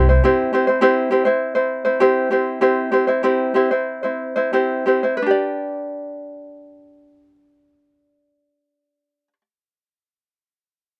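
Carefree and easy-going, this short pop fragment, cut from a longer piece, rests entirely on a single acoustic ukulele playing accompaniment in 4/4 with a straight feel. The ukulele is fingerpicked, light and up front, with a warm tone that sits between C4 and D5 and carries a touch of light reverb. The pace slows from 0.2 to 5.2 seconds over a C chord, and then the harmony moves to G as a new section begins at 5.2 seconds. The sound is dry and close, in the manner of a 1970s studio recording, and the instrument is tuned to A4 = 436 Hz, giving it a gently relaxed, unhurried charm.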